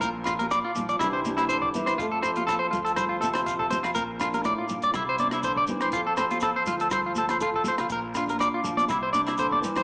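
Danceable and carefree, this short highlife guitar band clip moves in a lilting, lightly swung 4/4, cycling through Bb, Cadd9 and F. Up front, a twangy, slightly broken-up electric guitar plays fingered arpeggios, coloured by spring reverb and a slapback echo. Beneath it, a small, dark nylon-string guitar fingerpicks the accompaniment in a plate reverb, while a woody, thumpy upright bass with gut strings sits in the background. A compact cocktail drum kit with a punchy kick, hi-hat and rim click keeps a smooth, rolled-off pulse, joined by a grainy shekere, very quiet ringing agogo bells entering at 0.2 seconds, and high-tuned congas under soft hands arriving at 0.4 seconds. The whole clip carries a light reverb and a small-speaker sound, and a drum fill at 9.4 seconds closes the passage, which is cut from a longer piece.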